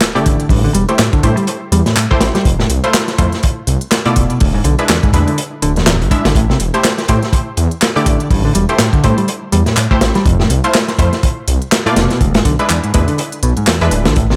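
A swung 4/4 breakbeat groove at 123 BPM drives this gritty, energetic cut in A minor, taken from a longer piece. A crunchy, saturated acoustic breakbeat kit sits up front with a tight kick, medium-tuned snare and hi-hat, layered with an electronic garage kit of handclaps and crisp, tape-warm hats that sound re-recorded in a large room. A very quiet sub drop marks the opening impact, and a thick, detuned saw bass with tube saturation growls underneath, menacing and beating. A punchy picked electric bass riff with digital delay moves above it, while bold, nasal orchestra-hit-like synth stabs with a filter pluck, built-in reverb and delay cut through brightly over the Am7, Fmaj7 and E7 changes. The kick drops out from 13.2 to 14.2 seconds before the section closes, all within a small room ambience.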